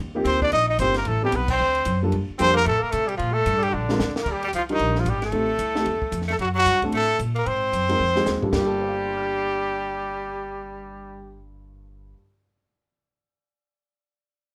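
Woody, thumpy pizzicato upright bass opens this cool, late-night small-group swing and bop excerpt in G minor at 225 BPM, joined almost at once by a natural, short-sustained upright piano, a bright tenor saxophone with vibrato on the second line, and an up-front, clear trumpet with light vibrato carrying the melody. The band hits an accent together at 1.5 s, while a compact, dark cocktail drum kit with a high-tuned snare and punchy kick plays fills before it stops at 8.6 s, the whole group set in light reverb.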